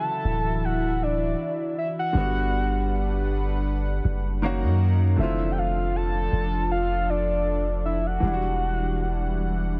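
A long, deep 808-style bass enters at 0.2 s and sits up front in this moody, late-night R&B passage at 79 BPM, with a gentle sixteenth-note swing. Above it, a soft, round octave-layered synth lead carries the melody with chorus, phaser, delay and vibrato. A clear concert grand piano accompanies, while a warbling, vintage analog pad with lush chorus sustains the chords from Dmaj9 through Gmaj7, F#6 and F6 to Em9. The dry mix, with little reverb, keeps this short cut from a longer piece close and intimate.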